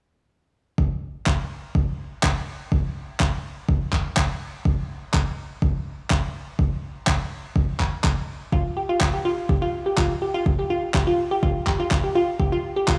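A glassy, detuned wavetable pluck arrives at 8.5 seconds with crystalline arpeggios between F4 and G4, coloured by chorus, dub echo and sidechain pumping, giving this emotional, expansive progressive house fragment its lift. Underneath, a deep, tape-warm electronic kick starts at 0.8 seconds and layered electronic handclaps join at 1.3 seconds, both sitting up front with a small-room character. The whole cut sounds as if played on a big sound system in a bare room, opened out by large studio reverb and a light digital ambience.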